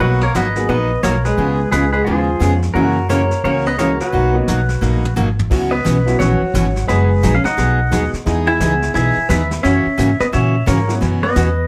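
In a moderate club reverb, this cheerful, swinging western swing excerpt in B major at 174 BPM features an up-front, twangy pedal steel guitar with fingerpicks and slide on the melody, a hollow-body archtop guitar playing a clean second line in the background, a bright dreadnought acoustic guitar and a clear, short-sustain upright piano on accompaniment, a thumpy pizzicato upright bass, and a vintage brush kit with dark cymbals that plays a drum fill from 4.8 to 5.5 seconds before the second section.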